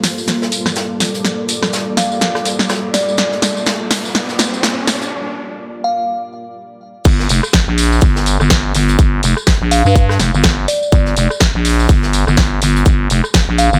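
Bouncy and gritty, this bass house excerpt opens on a build-up over a Gmadd9 chord, with swung sixteenths driving the groove. A deep, moody sawtooth pad holds sustained chords under a chorus sheen and sidechain pumping, while a blurred granular cloud pad drifts alongside it, and an electronic riser sounds from 1.4 to 5.1 seconds of the build. The punchy house drum kit, with bright hats, tambourine, rim clicks and crash, plays a fill through the opening, backed by a very quiet brushed kit whose snare, hi-hat and shaker carry a rolled-off, small-room tone. A crystalline FM bell melody, warbling with chorus and digital delay, enters during the build-up, and the cloud pad and drum fill stop at 5.1 seconds for a short break. At 7.1 seconds the drop lands, as a growling, thick FM bass, saturated and pumping, arrives together with a tight, up-front electronic kick. The bell melody returns at 9.7 seconds over a light reverb that keeps the mix close and driving.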